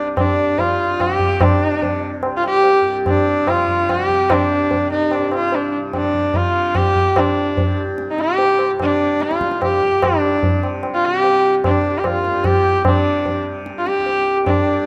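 A straight 7/4 pulse at 147 BPM gathers pace across this introspective, meditative Hindustani classical excerpt, tuned slightly below standard pitch at A4 = 437 Hz. Up front, a single bowed sarangi carries the melody between D4 and G4 with a nasal, boxy tone, light vibrato and gliding portamento, its sympathetic strings ringing. Low-tuned tabla with a short ring enters at 0.2 seconds, while a mellow, buzzing tanpura drone shimmers in the background, all set in a lush hall reverb within a rough home demo mix.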